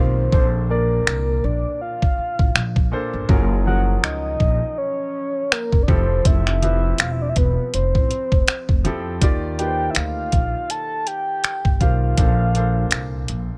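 A soft, octave-layered synth lead with a round, dark tone, chorus and vibrato opens this dreamy, romantic contemporary R&B excerpt at 81 BPM, joined from the start by a polished grand piano with short sustain, a woody pizzicato upright bass up front and a very quiet downlifter that ends at 3.3 seconds. At 0.3 seconds a detuned, tape-warm 8-bit drum machine enters with a thumpy kick, hi-hat and finger snaps, sitting up front with a lightly swung 16th-note feel. The chords move through lush major-ninth harmony from Bbmaj9 to Gbmaj9, Fmaj9 and Ebmaj9 before returning to Bbmaj9, all in a dry, close sound with little reverb.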